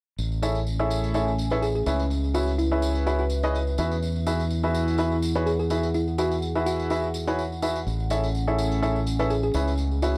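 A dry, gritty hardware recording with light reverb frames this euphoric, feel-good piano house excerpt, cut from a longer piece and moving with a gentle swing. A clear, woody upright piano sits up front from 0.4 seconds with its riff, slightly detuned and ringing with long sustain over Amaj7, C#m7 and Eadd9 chords. A bright, direct fingered electric bass shares the foreground, thickened by tube saturation and rounded by a low-pass filter. Two tambourine parts keep time: one is electronic and analog, tape-toned and re-recorded in a small room, tucked into the background under low-pass filtering, while the other is an acoustic, vintage, band-limited blend with egg shaker and group handclap. Behind them a warbling, nostalgic, lo-fi pad of detuned square and triangle waves fades in slowly and lingers through chorus and its own reverb, and from 1.5 seconds a round, tine-like FM pluck resembling a thumb piano adds a gentle, dark melody with a fast attack, a noise layer, chorus and tape echo.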